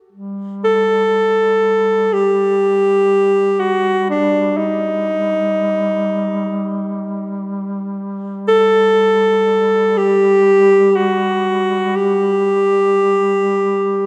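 A mellow duduk drone on G3 opens this Caucasian folk lament at 0.1 s, its soft attack, vibrato and scooped notes giving the sustained tone a smooth top and a folk character. At 0.6 s a clear alto saxophone enters up front with the melody, moving between D4 and A4 in a poised, classical style that sits well above the quieter drone. The music unfolds in free time, with the tuning set to A4 = 443 Hz. The mood is longing and solemn throughout this single section, which is cut from a longer piece and runs to 14.1 s. A wet church reverb with a 3.0-second decay surrounds the performance, lending it a spacious, sacred ambience.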